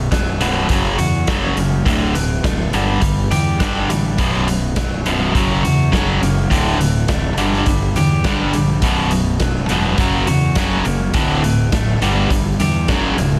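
Quiet-loud alternative rock in B minor at 104 BPM, this brooding, cathartic excerpt is cut from a longer piece and moves through a chord cycle built on B5, F#, Dsus2 and Gsus2 or G5. A cranked stack guitar sits up front with a bright, overdriven riff, while an electric guitar at the edge of break-up picks slightly broken-up arpeggios alongside it. A fuzz fingered electric bass adds a growly, overdriven low end, and a raw garage drum kit of hi-hat, kick and snare comes in at 0.1 seconds with a punchy kick, a medium-tuned snare and a dark, rolled-off top in a stone room. At 4.2 seconds a crunchy overdriven guitar joins in the background with a second picked riff, thickening the wall of distortion. Light, small room reverb and a dense, heavily limited modern master keep the sound close and forceful.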